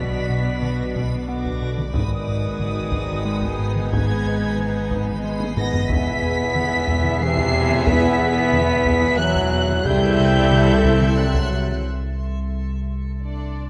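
Close, detailed microphones in a moderate scoring-stage reverb frame this tense, eerie suspense film-score excerpt at 91 BPM in 3/4: veiled con sordino symphonic violins carry the high melody over a soft-attack studio violin second line, rich muted violas, sustained chords from a distant, roomy French horn section and a bright, reversed granular texture, while a round, nasal analog bass riff, hushed bowed double basses, background cellos and an ominous, warbling drone fill the low end, very quiet heavy-stick taiko enter at 0.6 s with a fill at 5.4 s, and from 11.9 s the violins and drone hang on alone through the break.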